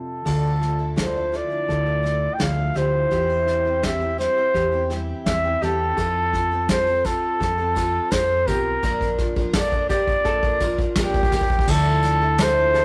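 A dark, smooth-topped trumpet carries the melody up front from the very start, played in a classical style with light vibrato, in this hopeful, nostalgic indie folk passage cut from a longer piece in a straight 4/4. Beneath it, a full-bodied, fingerpicked jumbo steel-string guitar sits in the background before dropping out at 5.9 seconds, while a shimmering, octave-doubled twelve-string strums out picked accompaniment and a light, fingerpicked ukulele weaves arpeggios through the texture. A round, hollow-body electric bass and an up-front brush kit with a punchy kick and medium-tuned snare anchor a steady build-up, marked by a drum fill across the passage as the chords move from Dmadd9 through C/E, F and Bb before returning to Dmadd9. A jingly tambourine joins very quietly at 6.0 seconds, and a crisp, dry group handclap flickers in briefly near the close, during a short new section. The whole has the rough, saturated character of a rehearsal-room recording, softened by light reverb.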